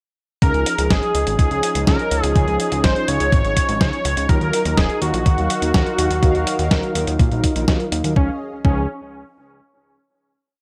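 A bold, up-front unison lead with vibrato, vintage 12-bit sampler grit and analog delay carries a motif-based melody through this romantic, danceable italo disco piece at 124 BPM in Db major, backed by a fat, detuned analog bass in sequenced sixteenths, dark brassy synth stabs in dotted rhythms with chorus and phaser, a lush sawtooth pad in the background, a thumpy four-on-the-floor kick and a dusty, compressed sampler kit of closed hats and snare, moving from Dbadd9 to Ebmadd9 before settling on a final Dbadd9 chord at 8.2 seconds in a dry, gritty hardware sound.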